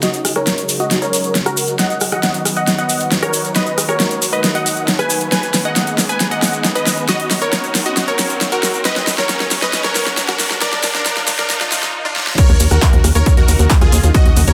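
Bittersweet and euphoric, this uplifting trance excerpt at 136 BPM in Eb minor builds for 12.4 seconds as a detuned supersaw stab melody with dub echo and a filter sweep rides over a lush, phased unison pad, a big-room drum kit with a huge snare and metallic hats, a grainy tube shaker, and a background riser and swell, before the drop at 12.4 seconds brings in a punchy electronic kick and a tight, pumping ring-modulated sequencer bass on Eb2, both up front in a dense, heavily limited mix.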